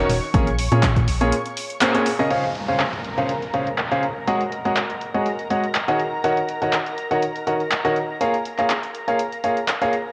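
Piano house with a euphoric, uplifting mood, heard as a short cut from a longer piece: a brilliant, up-front concert grand plays a riff through tape echo, low-pass filtering and cassette grit, over a silky, string-like analog pad in the background with ensemble chorus and sidechain pumping. A hollow, organ-like FM bass and an overdriven, punchy electronic kick appear only at the start before a break at 1.3 seconds, while a dry analog drum machine with handclaps, hi-hat and crash carries on. A faint electronic downlifter runs from 2.3 to 6.2 seconds under chords moving from Dbmaj7 through Ab7sus4 and Ebm7, all bathed in a wet spring reverb with a homemade cassette feel.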